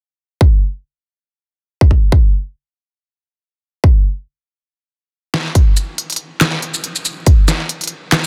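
A half-time dubstep groove at 140 BPM in 4/4, with a light swing on the sixteenths, opens on a punchy, tape-warm electronic kick that sits up front from 0.4 seconds, and the meditative, cavernous mood is carried by a digital ambience. During a stop that begins at 4.7 seconds, a layered dubstep kit with a deep snare, crisp hi-hats, handclaps and shaker bursts in with a fill at 5.3 seconds, leading into the drop at 5.6 seconds. The whole fragment, cut from a longer piece, has a dense, heavily limited modern master.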